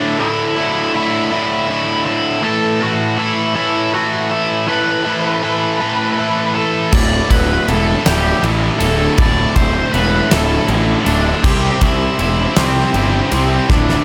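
A bright, double-tracked overdriven electric guitar riff sits up front in this cathartic, restless quiet-loud alternative rock excerpt in a straight 6/8, sharing the opening over Dsus2 and Asus2 chords with a dark octave-fuzz lead guitar melody, until a growly, punchy fuzz picked electric bass and a huge arena drum kit with a fat snare, bright cymbals and a punchy kick join at 6.9 s, with the harmony moving to C before a drum fill at 13.7 s, all in light reverb and studio ambience.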